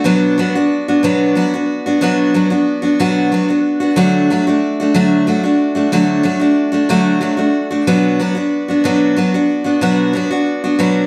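Dark, warm production sets this short rock excerpt in a moderately large studio room with a reverb tail of about 1.1 seconds, giving it a warm, open-road feel. A single picked steel-string dreadnought acoustic guitar plays alone throughout, sitting up front with a bright, full-bodied tone between B2 and F#4, and a slapback echo trails each note. The tempo is 61 BPM in a dotted-quarter 6/8 pulse with a straight feel, in D major and tuned slightly flat, with A4 at 437 Hz. The harmony moves from Bm at 0.1 s to D at 4.0 s and back to Bm at 7.9 s, as one passage repeats. The recording is cut from a longer piece.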